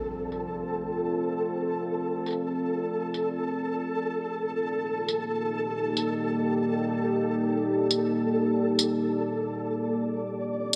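A wet, lush hall reverb wraps this heavy, dark fragment of half-time drum and bass in free time, set in D phrygian and moving from Dm7 to Ebmaj7 at 4.1 seconds before returning to Dm7 at 9.8 seconds. A deep, moody ambient pad built from sawtooth and sine with a sub octave holds sustained, warbling chords with a vintage, chorused shimmer, while a flickering, grainy granular texture of detuned triangle tones hovers alongside it. An electronic, overdriven tambourine, layered and re-recorded in a small room, enters at 0.3 seconds and sits up front with a filtered, gritty edge.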